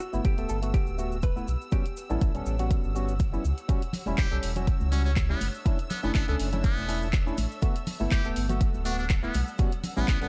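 A dark, warm studio sound frames this moody, smooth deep house excerpt in E dorian, moving at 122 BPM in 4/4 with a light swing on the sixteenths. Up front, a deep, layered electronic kick anchors the groove, joined by a produced drum kit of handclaps and dark hi-hats in studio reverb, while a full sine-and-triangle sub bass with an added octave pumps against the kick. A hollow, percussive organ stab carries the harmony through Gmaj9, Em69 and E13sus4, colored by chorus, tape echo and sidechain pumping. In the background, a silky, detuned analog string pad and a very quiet bowed string section with vibrato hold sustained texture, with grainy cabasa and soft-handed congas adding acoustic detail, the congas arriving at 3.9 seconds. A clean, compressed hollow-body jazz guitar plays a short delayed phrase until 2.8 seconds, and at 4.2 seconds a buzzy, forceful trumpet with a metal mute takes a jazz-style solo with scooped notes, light vibrato and tape echo.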